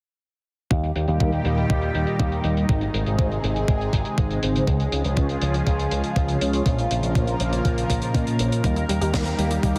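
This sunny, danceable italo disco passage, cut from a longer piece, moves at 121 BPM in a straight 4/4, cycling through Eb, Ab, Db and Bbm before returning to Eb. An overdriven, thumpy electronic kick sits up front, entering at 0.7 seconds together with a tight funk kit whose high-tuned snare and hi-hat sound small-roomed and filtered, lower in the mix. A punchy picked electric bass runs through an envelope filter, with a filter sweep across the whole passage. A lush, thick unison pad with chorus and phaser holds sustained chords up front, while mellow, round synth brass stabs with vibrato, chorus and digital delay sit darker in the background. At 8.6 seconds a warbly, dusty lo-fi pluck adds arpeggios in the background, and the whole mix has a heavily compressed radio sound with light studio reverb.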